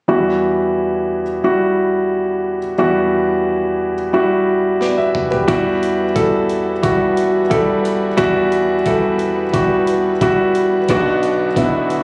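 Bittersweet and earnest, this piano-driven pop passage, cut from a longer piece, opens on a concert grand alone, intimate and up front, its deep bass and audible action noise giving it a close, natural presence as it sounds an Emadd9 chord. A breakbeat-style sampled drum kit arrives at 4.8 seconds with a fill, bringing a gritty, compressed sound with a thumpy kick, a high-tuned snare, hi-hat and toms, sitting well beneath the piano. At 5.5 seconds a new section begins as a very quiet string ensemble joins with sustained bowed chords, woody and lush with vibrato. The harmony moves to B minor near the close. The whole has the slightly roomy character of a phone recording, wrapped in a moderate large studio reverb and compression.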